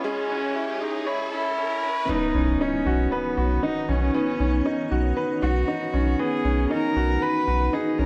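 Piano and strings electronica in B major at 117 BPM in a straight 4/4, this short cut from a longer piece feels luminous and hopeful. It opens on a build-up over C#m, where an electronic riser climbs beneath a bowed solo cello carrying the melody in a nasal, reedy gut-string tone with a period-style character, its sound shaped by a filter sweep. At 2.1 seconds the drop arrives on Badd9 with an impact. A deep, round sub bass holds B1 from 2.3 seconds, its sine tone up front and mellow. Throughout, a clear upright piano plays a woody, intimate riff with audible action noise, while a blurred, granular cloud pad sustains chords far back with its own built-in reverb and a moving notch. The whole is set in a lush hall reverb with a touch of small room ambience and a high-pass filter.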